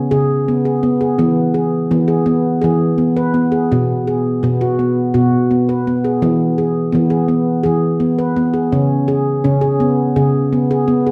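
Gentle and calm, this short world-meditative passage is cut from a longer piece and runs about 11.1 seconds. A lone handpan carries the whole performance, its nitrided steel played with the fingertips for a warm, ringing tone that sits up front in the mix. The tempo is 168 BPM counted in eighths, in a straight 7/8 metre within E major pentatonic, and the instrument moves through a range from B2 to B4. The harmony drifts through C#5, E and B5, then returns through E to C#5 by 8.7 seconds. A wet scoring-stage reverb blended with a small room gives each stroke a soft halo that suits the meditative, tuned-percussion character.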